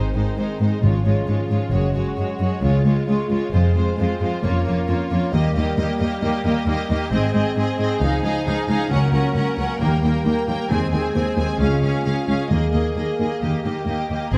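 Set in a moderate scoring-stage reverb, this heroic, soaring cinematic excerpt from a longer piece builds steadily as a lush violin section with smooth vibrato carries the melody over a darker, more distant violin line and an even, full-bodied viola accompaniment. Distant, roomy French horns hold sustained chords while focused, close cellos and expressive double basses ground the bass. Very quiet timpani on soft mallets add round, dry strokes near the start and again from 9.8 s, and an airy flute section with crisp attacks slips in behind at 13.9 s.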